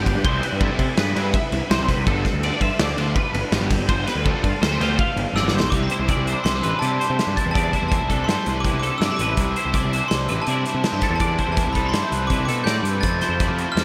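Set in an odd five-beat metre with a straight feel, this short cut from a longer math rock and midwest emo piece sounds bright and wistful. A loose acoustic indie drum kit sits up front, with a tight kick and a medium-tuned snare in a pumping small room, alongside a growly fuzz bass, while a compressed twelve-string electric guitar plays clean arpeggios above them. Behind these, a twangy clean electric guitar plays accompaniment through ensemble chorus, and a double-tracked, overdriven stack guitar drives a riff through analog chorus. Together with a drum fill at 5.4 seconds, a glockenspiel struck with brass mallets enters with a dark, bell-like melody trailed by diffuse ambient delay. The chords drift from Cmaj7 and G9sus4 to C69 and finally Fmaj7, and a lush hall reverb soaks the mix in a dreamy haze.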